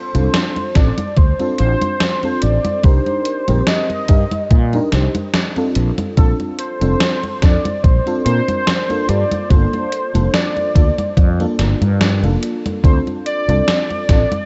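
A velvety, detuned synth lead with chorus and tape echo opens this woozy, melancholic vaporwave fragment in G minor at 72 BPM over a dreamy FM electric piano and soft pad layer with analog chorus. A growly fretless bass, up front with tube saturation, arrives at 0.1 s alongside a gated 80s drum machine of congas, hi-hat and gated-reverb snare, then a thumpy electronic kick joins at 0.8 s as the chords drift from Dm7 through Cm7, Bbmaj7 and Gm7, all wrapped in a dull cassette-tape haze.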